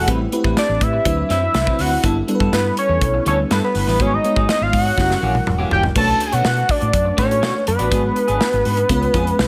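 Polished 1980s jazz-funk pop at 122 BPM in a straight 4/4 and F# phrygian, this nocturnal, slick excerpt puts a fat, detuned analog lead up front on the melody, riding over a lush FM electric piano with a soft pad layer and analog chorus, a slightly broken-up electric guitar riff tucked in the background with subtle chorus, and a dark, foam-muted fingered bass. A modern studio drum kit with a tight kick and medium-tuned snare drives the groove, playing a fill from 5.0 to 6.0 seconds before the second section arrives at 6.0 seconds. Extended chords such as Am9, D13 and Bm9 move through the passage under light studio reverb.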